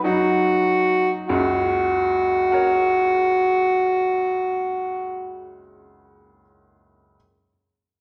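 A dark, distant cor anglais sings a serene, tender melody up front over a bright, brilliant baby grand piano in this romantic classical fragment, set in F# major at a slow 49 BPM in 3/4 with free rubato and a slowing in the opening 1.3 seconds. The piano's accompaniment spans from deep bass into the middle register, moving from a rootless B over F# to an F# chord, and it continues alone after the cor anglais stops at 5.6 seconds until 7.2 seconds. A wet recital hall reverb with a 1.5-second decay gives the playing an airy, roomy glow.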